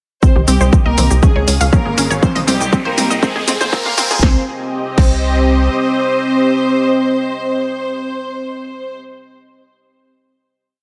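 A punchy electronic kick drum sits up front in this dark, melancholic melodic techno piece at 120 BPM in C phrygian, driving a four-on-the-floor pulse alongside a tape-warm analog drum machine with programmed hats, shaker, snare backbeat, toms and crash. A tight sequencer bass rolls in sixteenth notes from 0.4 seconds, while a bright, warbling detuned pluck spins a six-step arpeggio that drifts against the bar, with the drums, bass and pluck all dropping out by around 5.7 seconds. Above them, a round, brassy synth lead with chorus and vibrato repeats a riff, doubled an octave higher by a biting, smooth-topped studio violin section, both pumping against the kick and trailing delay echoes. A thick, detuned unison pad with a sub octave, chorus and phaser holds long chords through Cm, Db and Fm. The opening build carries a drum fill, filter sweeps on the arpeggio and a background riser, then resolves at 4.2 seconds into a sustained final C minor chord carried by the brass, strings and pad under light reverb.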